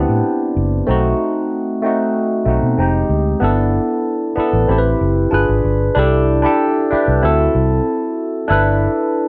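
A straight 4/4 groove at 94 BPM carries this brief, bittersweet and cinematic slice of lush 1970s-style soul, with a barky, bright tine electric piano providing accompaniment through a combo amp and a phaser while a dark, foam-muted fingered electric bass gives a round, punchy vintage bottom. Both parts sit up front in light reverb, moving through rich extended chords such as Am11, B7b9, Fm9 and C69 before the harmony settles on G6, with a new section opening at 3.4 seconds. The bass drops out at 8.9 seconds, leaving the clean electric piano alone until 9.3 seconds.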